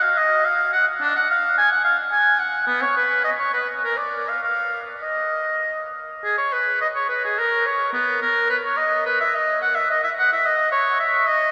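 In a rubato 3/4 at 96-111 BPM, this grave, solemn baroque-style fantasia in Eb minor, cut from a longer piece, features a solo oboe with a clear tone, light vibrato and soft attack, placed up front and ranging from B3 to Ab5 across 11.5 seconds, set in a vast, echoing space whose huge, wet reverb lingers for 6.9 seconds.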